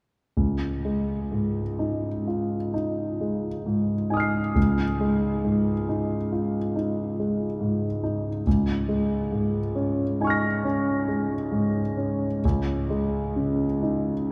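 A concert grand piano, heard alone and close up, carries this hazy, serene piece of impressionist classical music in Db major, its deep bass and the sound of its action audible in an intimate, natural tone. The pulse moves slowly in 9/8, around 41-48 beats per minute counted in dotted quarters, and the playing bends the time freely with rubato. The harmony opens on a lush Dbmaj9, settles onto Db6 at 8.5 seconds, and drifts to a rootless Gbsus2 over Db at 12.4 seconds, spanning the keyboard from Db2 up to C7. A long cathedral reverb, decaying over 5.5 seconds, wraps every note in a dark halo. The recording is a short cut from a longer work, with the piano sounding from 0.4 to 14.3 seconds.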